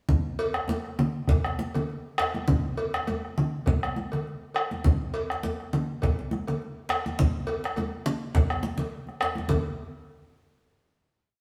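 A driving 4/4 groove with a light swing on the sixteenths sets this short, powerful West African drum ensemble piece in motion, and the pulse gradually speeds up from start to finish. The round, vintage, band-limited bombo sits up front with an evenly spread pattern, joined from the opening moment by bright, thin-skinned congas, damped and medium-tuned, struck with hard hands and also placed close and up front. A deep djembe, played with hard hands and heard close and dry, adds its own evenly spread pattern. At 0.4 seconds a metallic cowbell enters with a bell pattern that carries the sound of the live room. The band plays together in a stone room whose reverb gives the ensemble a lively sense of space, and the piece closes with a final hit at 9.5 seconds.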